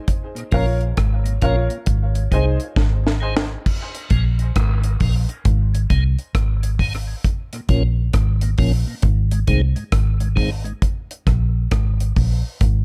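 A swung dub reggae groove at 67 BPM in 4/4 opens with a break, the deep drum kit sitting dry, dark and up front with its tight kick, high-tuned snare, rim clicks, hi-hat and crash, and a drum fill carries it into the next section at 3.7 seconds. A round, foam-muted vintage electric bass sits prominently beneath, while a piping, lightly overdriven tonewheel organ, high-pass filtered and turning through a slow rotary speaker, supplies the accompaniment. A woody, slightly detuned upright piano adds boxy stabs through tape echo in the opening seconds, and a filter sweep runs from the start until about 7.2 seconds. The chords cycle between Bbm and Ab before settling on Absus2, and a mellow, clean electric guitar surfaces very quietly for a moment at 4.1 seconds. Studio reverb lends spacious, hypnotic depth to this fragment of a longer piece.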